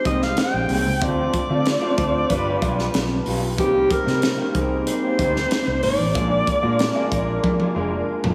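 A breathy, vibrato-laced alto saxophone carries the melody up front over a concert grand piano with audible action noise and long sustain, opening this glossy, urban stretch of polished 1980s jazz-funk pop cut from a longer piece. A foam-muted, round electric bass and a crisp fusion kit with a punchy kick and high-tuned snare join within the first moment, while a twangy, slightly broken-up guitar riff sits in the background, bathed in lush chorus. Slapback echo touches the sax, piano and guitar, a lush hall reverb gives a big arena sheen, and a drum fill at 7.4 seconds closes the passage as the chords move from Abmaj9 through Dm7, G7 and Cm7 to Bb7.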